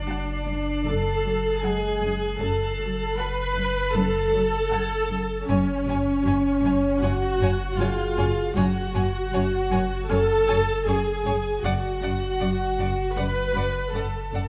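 Dark, woody violas sit up front from the start of this mysterious, ominous suspense-film excerpt, beneath a pure, floating violin melody and a second violin line played sul tasto, with distant, roomy French horn chords, a deep, round sine sub-bass drone, an intimate high violin texture that stops at 5.1 s, a rich cello riff, cellos and double basses holding a low bass note from 0.9 s, and a mellow, thumb-plucked harp ringing very quietly from 3.2 s, set in a moderate scoring-stage reverb.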